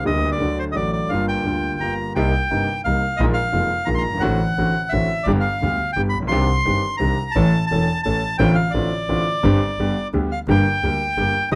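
From the first moment, a reedy, dark bandoneon sings the melody up front over a vintage-toned concert grand piano with deep bass and a distant, floating bowed double bass played sul tasto, in a sultry, passionate tango fragment at 173 BPM in 3/4 with a rubato feel, its minor-tinged harmony drifting between G minor and G major under light reverb before settling back on G minor at 10.5 seconds.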